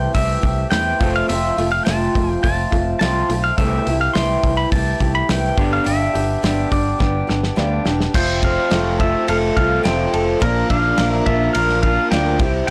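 Folk rock with a heartland rock streak, this open-road, jangly excerpt moves at 105 BPM in a straight 4/4. A clean pedal steel guitar, played with fingerpicks and volume swells, carries the melody over a boxy, picked ladder-braced acoustic guitar, a slightly broken-up, lo-fi electric guitar riff through a small old amp, and a round electric bass with transformer saturation. A damped 70s drum kit sits up front with dark cymbals, a tight, softly clipped kick and a drum fill from 7.0 to 8.1 seconds, all in a blown-out, overdriven recording with moderate studio reverb as the chords move through C6, F, G and Bb.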